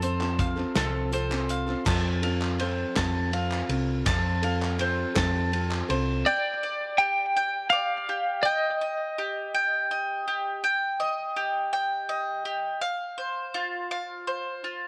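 A bright, twangy twelve-string electric guitar carries the melody with tremolo and tape echo, sounding from the start and returning at 6.3 seconds over a warm, double-strung bowl-back mandolin arpeggio that runs throughout, while a fresh-stringed steel-string acoustic guitar, a dark, round hollow-body bass, a loose indie drum kit with dark cymbals and a punchy kick, and distant, hollow group handclaps fill out the first 6.3 seconds of this wistful, yearning indie folk piece in 6/8, cut from a longer recording in a small room with light reverb.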